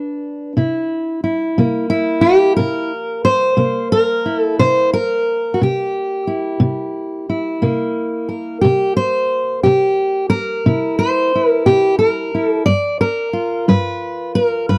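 This acoustic country blues piece is a laid-back, soulful 14.8-second excerpt cut from a longer performance, moving at 60 beats per minute in dotted quarters with a straight 12/8 lilt. A single fingerpicked steel-string acoustic guitar carries the whole passage, ranging from G2 up to D5, and its auditorium-bodied tone sits up front with a warm character. The harmony opens on G and shifts to C7 at 0.6 seconds, staying there until a G7 arrives at 12.7 seconds. The instrument is tuned slightly low, with A4 at 438 Hz. The sound is a dry, close 1970s-style studio recording touched with light reverb, giving the guitar an intimate, in-the-room presence.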